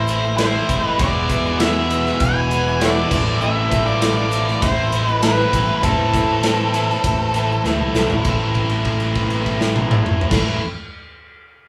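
A dark, fuzzy octave-fuzz lead guitar carries the melody through distortion and digital delay, shadowed by a second fuzz line in the background, until both stop at 7.6 s. This brooding, gritty classic rock cut in A minor moves at 99 BPM in a straight 4/4, with a big, up-front drum kit of bright cymbals and boomy kick, a round, punchy fingered bass, two bright distorted rhythm guitars playing riffs, a woody upright piano in the background, and a faint grainy tube shaker. After a drum fill at 7.7 s, a held note rings from 8.3 s, all captured as a live band in a small studio room.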